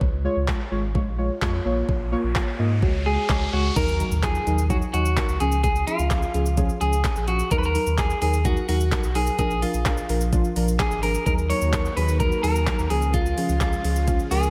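A clean, picked electric guitar with tape echo carries the melody up front from 3.1 seconds, over a summery, euphoric dance-pop groove built on a knocking, woody R&B drum kit with metallic hats, a deep pumping sub bass, warbling chorused chord stabs, a background riser and impact, and a lush supersaw pad arriving at 11.3 seconds, all set in a big arena-like hall.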